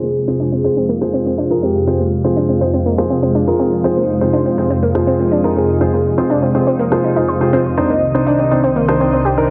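A lush, airy supersaw pad sits up front with sustained, detuned chords under a filter sweep, joined by stabs from a natural-sounding baby grand piano and a round, bright analog pluck playing arpeggios with chorus and tape echo, both also swept by the filter. This expansive, emotional progressive house passage moves from Fm to Cmadd9 at 7.8 seconds, while a velvety synth lead with vibrato carries the melody in the background. A reversed, granular swelling texture enters at 0.9 seconds and an electronic rim click at 1.0 seconds, all set in a lush hall reverb with a heavily compressed, low-passed radio sound.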